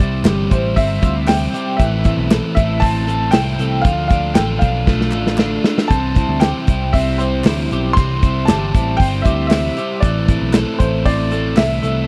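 Jangly indie pop at 116 BPM in C major, youthful and bright, this excerpt sets a woody, slightly detuned upright piano melody with tape echo and audible action noise over twangy, compressed twelve-string arpeggios and a crunchy overdriven guitar. Underneath, a round, foam-muted picked bass and an up-front drum kit with a tight kick and rolled-off top hold a straight 4/4, with a drum fill at 4.9 seconds and crisp group handclaps sitting in the background. The chords move from C to Am to Dm and back to C before settling on Am, all captured in a dry, close 1970s-style studio sound.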